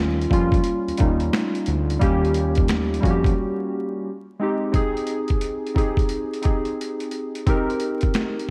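A swung 88 BPM boom bap groove in 4/4 drives this nostalgic, melancholic lo-fi hip hop excerpt, with a compressed, pitched-down, gritty drum kit putting a thumpy kick and high-tuned snare up front, while a barely audible, close finger snap sits in from 1.3 to 2.9 seconds. Warbling, detuned, mellow synth keys with chorus and a low-pass filter carry the Eb7, Abmaj7 and Abmaj9/C changes, joined at the start by a fat, sawtooth analog bass that stops at 3.3 seconds, just before a break. Light reverb and vinyl crackle frame the whole piece.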